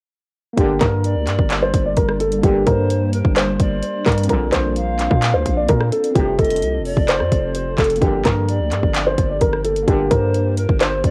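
Brooding and hard-hitting, this half-time trap excerpt in G minor at 129 BPM sets a dark, boxy grand piano melody over a heavy, punchy 808 bass and an up-front trap kit of hard-clipped kicks, metallic hats, handclaps and rim clicks, moving from Gm through Bbadd9 and Fadd9 back to Gm. Behind them sit a worn, slightly out-of-tune tine electric piano, tight classical-style brass stabs that stop at 10.3 seconds, and an ethereal detuned pad with chorus and reverb that enters at 1.5 seconds. A distant, reedy pan flute with vibrato and tape echo carries a second line from 1.0 seconds, and the whole excerpt has the small-room ambience of a home cassette recording.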